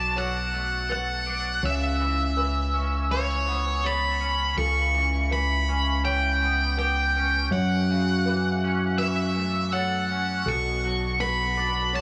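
Rock with a cathartic, cinematic mood, this short section cut from a longer piece moves at an unhurried pace in a straight four. Up front, an octave-fuzz lead guitar carries the melody with a dark, distorted tone, its fuzz trailing into digital delay, while a growling fingered bass sits beside it, overdriven and direct. Beneath them, a twangy electric guitar picks bright, clean arpeggios coloured by chorus and delay, and a felt-muted upright piano adds soft, intimate arpeggios in the background, its action noise audible. At 10.5 seconds a clear symphonic string section slips in with very quiet sustained chords, bowed smoothly with light vibrato. The harmony moves from Bm7 through Aadd9/C#, C#m7b5 and F#m7 before returning to Bm7, all set in a small room with light reverb.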